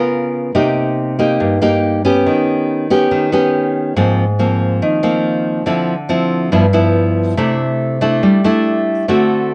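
A straight 4/4 pulse at 141 BPM carries this relaxed, sunny bossa nova fragment, cut from a longer piece and lasting 9.5 seconds. A lone nylon-string guitar plays throughout, fingerpicked and up front, with a full-bodied, deep classical tone that ranges from G2 to A#4. Its harmony moves through rich colours, from C#6 and Cm7 to Ebaug7, Ab69 and Dm9, before settling through G6 onto C69. The instrument is tuned to A4 = 438 Hz, and a moderate studio reverb with a 0.7-second tail gives the sound a gentle sense of space. The result is relaxed and sunny, a warm glimpse of solo guitar harmony.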